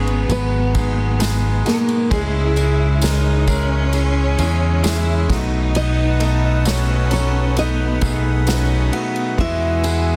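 A fingerpicked nylon-string guitar carries the melody with finger squeak over a lush, bowed cello section, an intimate concert grand with action noise, very quiet picked electric guitar arpeggios and a round, up-front fingered bass in this heartfelt 66 BPM pop ballad in B major. A small-room acoustic kit played with bundle sticks, with dark cymbals, a punchy kick and a lightly clipped snare, plays alongside a jingly background tambourine, and a reedy, sweet accordion adds sustained chords with light tremolo tuning from 5.8 s, all within a dense, heavily limited modern master.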